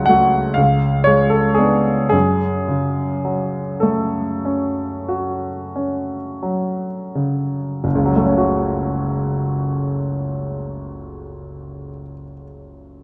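Wistful and yearning, this romantic classical nocturne for solo piano unfolds in F# minor and 9/8, its rubato pulse drifting between 27 and 44 BPM in dotted quarters and slowing through the opening 7.8 seconds before a new section begins. The grand piano sounds clear, worn and up front, spanning F#1 to F#5 as it moves from F#m/C# through C#5 to F#m, tuned to A4 = 445 Hz. A moderate recital hall reverb and a dark, warm production frame this 13-second passage, which is cut from a longer piece.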